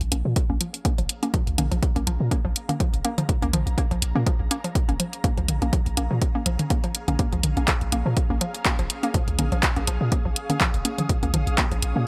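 A dry, close-sounding excerpt of sparse, hypnotic minimal techno, where a punchy, up-front electronic kick and an analog drum machine's handclaps and hi-hat drive a swung groove, with electronic bongos and toms trailing tape echo, a deep sine sub bass with a pitch-drop attack pumping under tube saturation, a hollow, bouncy square-wave pluck riff carrying chorus and delay, and an ethereal, warbling pad fading in softly behind them on a single sustained minor-seventh chord.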